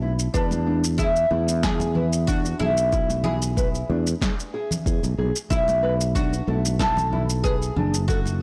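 A nylon-string guitar opens this short organic downtempo excerpt at 0.0 s, its small, thumb-plucked arpeggios showing finger squeak and trailed by a delay. A sustaining fretless electric bass sits up front beside it, bright and growly with tube saturation and a sidechain pumping. By 0.3 s a plectrum-plucked oud carries the melody, its woody double strings colored by tape echo, while an overdriven electronic kick with a deep thud joins a layered electronic shaker and punchy snare, both re-recorded in a small room. Very quiet acoustic congas add a live-room texture beneath the earthy, warm mood. The harmony rests on E before moving to B7(no3) at 5.5 s, and the whole mix comes across as blown-out and overdriven, with light reverb.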